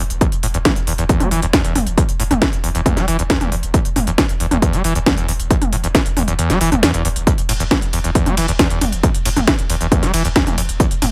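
Driving peak-time techno, intense and industrial, cut from a longer piece: a squelchy, screaming acid riff of filter-swept, resonant sawtooth with distortion, chorus, delay and sidechain pumping sits up front over a deep, thick saturated sub bass that also pumps, while a tape-coloured, small-room drum kit of cracking snare, smooth hi-hats, ride cymbal and toms drives alongside a heavy electronic kick that drops out from 6.4 to 7.3 seconds, all in a dry, close mix.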